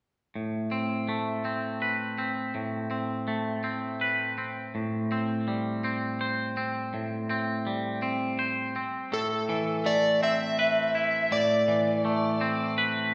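A slow, straight 6/8 sway at 55 dotted-quarter beats per minute carries this cinematic, cathartic rock excerpt in A minor: a bright, clean, twangy electric guitar with a scooped tone picks arpeggios up front over Amadd9 and Am7 from 0.4 seconds, and an overdriven, fingered slide guitar joins with a melody at 9.1 seconds, both set in the wet, lingering reverb of a recital hall.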